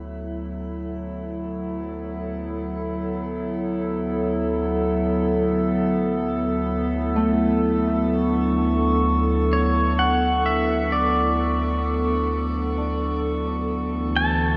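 Serene and luminous, this ambient excerpt drifts at 65 BPM in 3/4 in D major, its warbly, nostalgic tape-like pad fading in up front with dark, detuned sustained chords that move from Dsus2 to Dmaj7 and on to E5/D, while a glassy, ethereal glass harmonica fades in alongside it, beating in a boxy small room. A ringing, thumb-plucked Celtic harp sits in the background with arpeggios, sounding briefly at the start and returning at 7.2 s through shimmer reverb and tape echo. At 9.5 s a bright, twangy pedal steel guitar takes the melody up front with fingerpicks, slide and volume swells, all of it soaked in a lush hall reverb for a dreamy mix.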